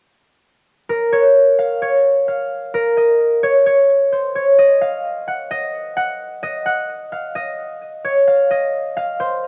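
Set in a half-time 4/4 feel at 130 BPM, this hard-hitting, menacing hip hop excerpt features a concert harp carrying the melody up front from 0.9 to 9.5 seconds, its acoustic, fingerpicked, ringing tone softened by a low-pass filter and tuned slightly sharp to A4 = 441 Hz, heard in a wet booth ambience on a homemade cassette recording.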